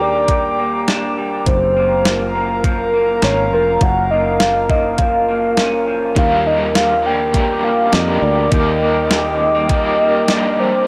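Dream pop at 102 BPM in Eb major, dreamy and blissful, cut from a longer piece as it drifts from Ebmaj7 to Gbmaj7 and back. A soft, round octave-layered synth lead with vibrato carries the melody over a warbling, nostalgic tape-like pad, while an electric guitar through a small old amp plays slightly broken-up arpeggios and a dark, punchy fingered bass anchors the low end. A crisp, thumpy 8-bit drum machine sits up front with overdriven grit, a crunchy double-tracked guitar with tremolo joins at 6.2 seconds, and light digital ambience frames a dry, gritty hardware sound.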